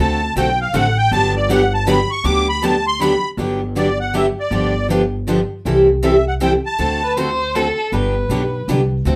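Charming and swinging, this snippet of acoustic jazz manouche at 159 BPM in 3/4 and G major opens with a reedy, shimmering musette accordion taking the melody up front over two picked steel-string guitars, one bright and full-bodied and the other a warm dreadnought, and a woody, thumpy pizzicato upright bass on gut strings, before a distant yet expressive bowed violin with vibrato and portamento enters at 7.0 s and the accordion stops at 7.1 s, the band heard live in one room with moderate reverb and a faint mains hum.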